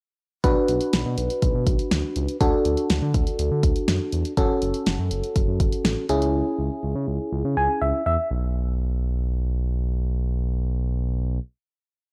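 A dry, gritty cassette-tape recording holds this short, driving and nocturnal synth-pop piece at 122 BPM in B dorian, moving through Bm, D, F#m and C#m. Up front, a glassy, bell-like FM electric piano with chorus holds triad chords before a fill at 7.3 seconds. Beneath it, a dark, smooth sawtooth synth bass sustains until 11.4 seconds, while a deep house drum kit with deep kick, fat snare and hi-hat plays a straight drum-machine beat until 6.3 seconds.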